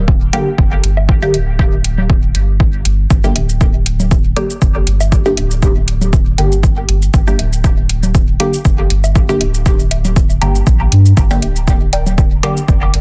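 A soft, round sub bass opens this nocturnal, hazy dub techno excerpt, its deep sustained tone pumping under the sidechain, and an up-front, punchy kick with overdriven bite arrives almost at once. Within the first second a muted, nasal chord stab settles in, its sawtooth filter pluck carrying a resonant moving notch, phaser and dub echo. Metallic, overdriven hi-hats and shaker sit over a lightly swung 4/4 groove, while tape-tinged analog congas and woodblock murmur in the background, pumping and trailing dub echoes of their own. The whole passage rests on a single minor chord, and near the end, at 11.9 seconds, a second, higher stab flickers in briefly, detuned and chorused, with a vintage 12-bit sampler grit. A digital ambience surrounds the parts, and the master is dense and heavily limited.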